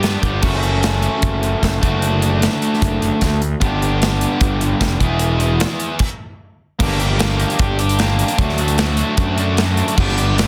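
A bright, double-tracked distorted electric guitar drives this jangly, carefree indie rock excerpt with a picked riff in straight 4/4. It sits up front beside a fuzzy, overdriven picked bass with a punchy, warm tone and a big acoustic rock kit with bright cymbals, a punchy kick and a softly clipped snare. A stop arrives at 6.0 seconds, then the music shifts into a new section at 6.8 seconds, all under light reverb and a dense, heavily limited modern master.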